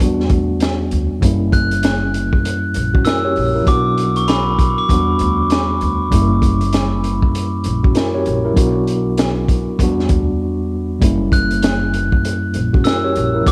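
A home recording on cassette with small-room ambience gives this reflective, gritty boom-bap hip-hop fragment its hazy character. At 98 BPM in 4/4 with a swung 16th-note feel, a saturated, crunchy breakbeat kit sits up front, its punchy kick, high-tuned snare and hi-hat dark and rolled-off on top from cassette tape coloring. A mellow, clean tine electric piano carries the accompaniment through a cycling progression of Em7, F#7b9 and Bm. Beneath it, a woody pizzicato upright bass with steel strings holds the low end. A bell-like glockenspiel played with soft plastic mallets, close-miked and ringing through tape echo, sings the melody from 1.5 to 5.7 seconds, then returns at 11.3 seconds after a brief break.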